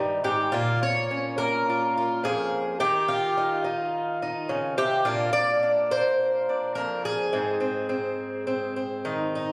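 Captured on a phone in a room with light club reverb and compression, this peaceful, nostalgic folk excerpt at 106 BPM in Ab major features a solo fingerpicked twelve-string acoustic guitar, up front and brilliant with fresh strings, its octave-doubled shimmer sitting against a boxy body and audible finger squeak as it moves through Ab, Bbm, Ebsus2 and Bb before returning to Ab at 7.3 seconds.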